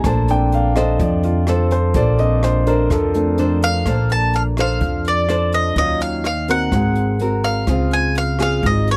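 A bright, picked mandolin carries the melody up front from 3.6 seconds, entering just as the warm concert grand piano's solo over the opening of this sunny, sophisticated bossa nova excerpt in Bb major at 126 BPM draws to a close. Underneath, a fingerpicked nylon-string guitar adds classical-style accompaniment, a woody pizzicato upright bass sits close and present, and a jazz brush kit with a boomy kick, hi-hat and rim click brings a small-room feel, all in a dry setting with little reverb. The harmony moves from Bbmaj9 through Ebm9 and Ab9 to Dbmaj7.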